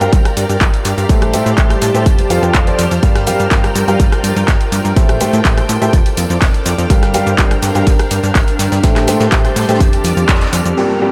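An echo-heavy mix with spring reverb and small-room ambience carries this energetic, soulful piano house excerpt, where a clear, woody upright piano riff with dub echo and sidechain pumping rides over an overdriven, up-front electronic kick, a funky plucky analog bass, a tape-toned analog drum machine of handclaps, hi-hat, rim click and shaker, a very quiet close tambourine, and background beds from a silky, chorused analog string pad and a blurred, evolving granular cloud pad, while a distant jazz brush kit of hi-hat and snare joins at 3.0 seconds, a band accent hits at 10.3 seconds, and an electronic downlifter closes it at 10.8 seconds.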